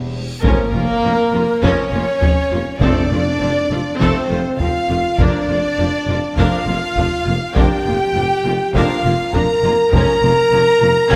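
A moderate scoring-stage reverb gives this triumphant, heroic excerpt from a longer cinematic orchestral score a spacious sheen, with a warm French horn section placed up front on sustained chords. It moves at 101 BPM in a straight 4/4, the harmony passing from Bb minor over F to F, then Bb over F and back to Bb minor over F. A reverse cymbal begins at 0.1 s and leads into a huge impact at 0.4 s, where a close taiko ensemble struck with heavy sticks enters alongside a classical-style solo tuba in the background, a very quiet, tight and bright trombone section on sustained chords, and an airy, hollow concert flute with vibrato and a soft attack carrying a second line. The melody belongs to an intimate chamber violin section played sul tasto with a gentle attack. A dark, expressive symphonic violin section adds another line in the background, while a rich, intense viola section accompanies, a very quiet cello section holds a smooth, even bass, and a woody double bass section sits underneath. 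Timpani with medium mallets strike an F at 2.8 s in a small-room sound.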